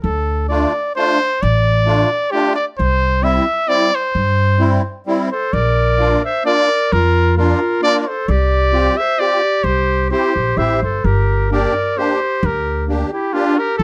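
Alpine folk dance-band music in a bouncy, festive 3/4 at 131 BPM, with a swung, rubato lilt over chords that move from Dm through C and Bb to Gm. A smooth-topped, classically styled trumpet carries the melody up front, while a woody pizzicato upright bass on steel strings and a reedy, shimmering musette accordion share the foreground. A bright clarinet adds a second line from 5.3 s, all set in light reverb in this short cut from a longer piece.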